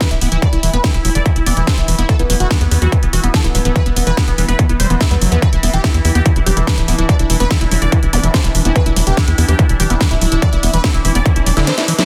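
This excerpt opens at full tilt, with a distorted, overdriven electronic kick sitting up front alongside a techno kit of hi-hat and cracking snare, a tight sequencer bass, and a detuned supersaw stab carrying the melody from B3 to E5. It is intense, alien psychedelic trance at 144 BPM in straight 4/4, tuned to A4 = 436 Hz and centered on E. The bass is punchy and dark, a sawtooth and square-wave tone with ring modulation and a plucked filter, while the airy, evolving stab is thickened with unison and a noise layer and treated with phaser, delay and sidechain pumping. Further back, a squelchy, screaming acid riff with resonant filter sweeps, distortion, chorus and dub echo runs alongside an overtone-sweeping drone whose slow-attack sawtooth-and-sine chords shimmer through chorus, phaser and built-in reverb. A very quiet zap and riser enter at 8.1 seconds, and at 11.7 seconds the kick drops out for a drum fill. 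The mix is dry, dense and heavily limited in a modern style.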